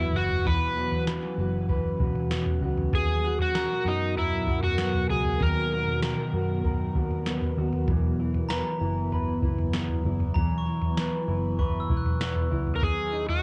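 An overdriven slide guitar sings an up-front melody over an airy, detuned sawtooth pad with ensemble chorus, slightly broken-up electric guitar arpeggios touched with subtle chorus and tape echo, and a round, foam-muted bass sitting in the background, all drifting between Esus2 and Bmaj7 in this ethereal, floating dream pop excerpt. A soft analog rhythm box with a deep kick, crisp snare and toms carries the straight 4/4 pulse, while the slide guitar falls silent at 6.0 seconds and a sparkling, close-miked glockenspiel with tape echo enters at 8.5 seconds. The slide returns briefly at 12.8 seconds, and the whole home cassette recording carries a hazy tape character under light digital ambience.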